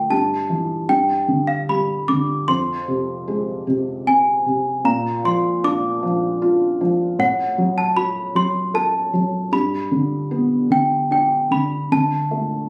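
A worn, bell-like celesta carries a delicate, slightly out-of-tune melody up front over a dark, felt-muted upright piano accompaniment from the very start of this tender children's lullaby in a gentle three-beat sway, heard in a moderate studio reverb and recorded on a phone in the room, cut from a longer piece at 12.7 seconds.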